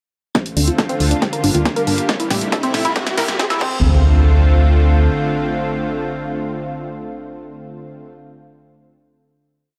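A punchy four-on-the-floor electronic kick and a house kit of programmed hats, snare backbeat and crash drive this euphoric uplifting trance build through a drum fill and filter sweep to 3.8 seconds, alongside a nasal, detuned sawtooth arpeggio sequence coloured by chorus, phaser and tape echo and a lush, bright unison pad holding sustained chords until 8.1 seconds, joined by a round, dark FM bass pumping off the beat and a riser and impact in the background carrying the music into its final hit.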